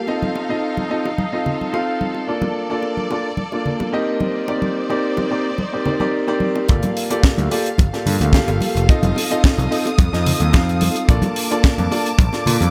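A light reverb and small room ambience frame this sensual, cosmic nu-disco passage, cut from a longer piece, in G minor at 109 BPM in a straight 4/4. A grand piano with audible action noise, a boxy character and long sustain sits up front with tape echo, carrying the accompaniment over chords moving from F7 to Bbmaj7 and Cm9. Alongside it, a lush bowed string section holds sustained chords with vibrato, a biting yet smooth top, and sidechain pumping, while bright, close bongos and congas add percussion from the opening moments. At 6.7 seconds the drop arrives: a dry, tight acoustic kick pushes up front, a funk kit adds hi-hat and a high-tuned snare, and a dark, round, overdriven picked electric bass enters direct and prominent in the low register. The harmony then cycles through Gm9, F7 and Bbmaj7, with the kick falling away at 12.3 seconds as the other parts carry on to the end.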